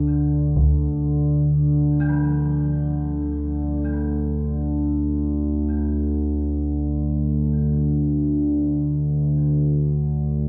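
A desolate, dark ambient drone in free time and D minor opens on a warbling analog sawtooth drone, thickened with chorus and held up front, while a bronze gamelan-type metallophone fades in from the background with delayed, shimmering arpeggios. A brief hit from a taiko ensemble struck with heavy sticks sounds at 0.6 seconds, muffled by a low-pass filter, and the metallophone stops at 9.4 seconds, leaving the drone to sustain alone in a light reverb until this fragment of a longer piece is cut off.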